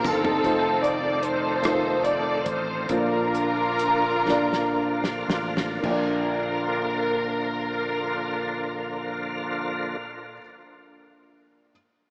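A slow, hopeful gospel passage in 6/8 and Bb major opens with a drum fill on a warm soul kit with a fat snare and tight kick, while a dark, up-front string section carries the reverent melody over a woody, slightly detuned upright piano set in the background and a bright tonewheel organ holding sustained chords through a slow rotary speaker. A round fingered electric bass sits low beneath the chords moving from F7 to Bb, the tempo slows between 0.4 and 5.8 seconds, and a second drum fill arrives before the kit stops at 6.1 seconds. The strings and organ fall away at 10.0 seconds and the bass follows at 10.4 seconds, leaving the piano to ring out last in a lush hall reverb with a big arena sound, and the strings and piano carry a slapback echo.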